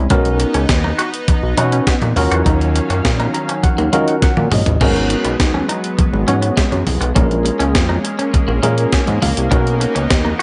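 Late-night and funky, this early-eighties boogie funk excerpt moves at 102 BPM in a straight 4/4, set in G# dorian and cut from a longer piece. An up-front, glossy synth bass built from detuned pulse, sawtooth and triangle waves with a fast, plucky filter and chorus anchors the groove, while a clean 12-bit drum machine with a thumpy kick, medium-tuned snare, hi-hat, toms, crash and gated reverb sits just as far forward, its tape-softened, sampler-style sound re-recorded in a small room. A worn, slightly out-of-tune tine electric piano, lightly overdriven through built-in speakers, carries the accompaniment and adds fills at 3.0 and 8.6 seconds, with a drum fill landing at 4.2 seconds. Behind it, a lush, thick unison pad of detuned sawtooth and square waves holds slow-blooming sustained chords through Bmaj7, D#m9, G#m11 and A#m7. A bright, twangy clean guitar picks a compressed riff with analog chorus in the background, and very quiet, low-tuned vintage congas add thin-skinned color, all in light digital ambience with a dark top end.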